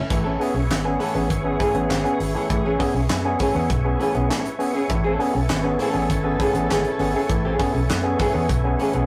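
From the first beat, a cool, driving funk groove at 100 BPM rests on a single Amaj9 chord: a crisp fusion kit with punchy kick, high-tuned snare, hi-hat and handclaps; a dark, round, foam-muted fingered bass up front; stringy clav stabs overdriven through a combo amp; clean, picked hollow-body archtop guitar; slow-rotary tonewheel organ chords with key click and chorus vibrato; and a tight horn section with vibrato playing a second line in the background, captured as a rough rehearsal-room recording with warm saturation and wet reverb, cut from a longer piece.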